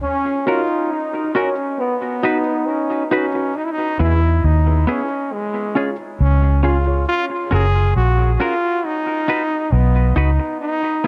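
Hazy and laid-back, this slow 68 BPM reggae clip in F# major puts a brilliant, lightly vibratoed trombone melody up front, joined by a breathy, whispered second trombone until 3.1 seconds, with a clean, hollow-body electric guitar accompanying and a reedy, worn, slightly out-of-tune electric piano adding stabs in the background, all soaked in tape echo and spring reverb, before a dark, round, punchy foam-muted bass enters at 4.0 seconds over chords moving from F# through B, E and C#.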